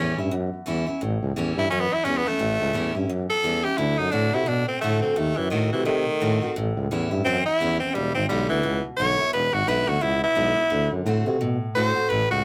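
A rough rehearsal-room recording with light reverb captures this rollicking, rowdy rockabilly excerpt, swung and moving through A7, D7, a D#dim7 chord, back to A7, then E7 and D7. A gritty, forceful tenor saxophone carries the melody up front with a punchy vibrato, while a close-miked tuba supplies the bass with a light vibrato of its own. Beneath them, a bright, full-bodied jumbo steel-string acoustic guitar is picked for accompaniment throughout the 12.4 seconds.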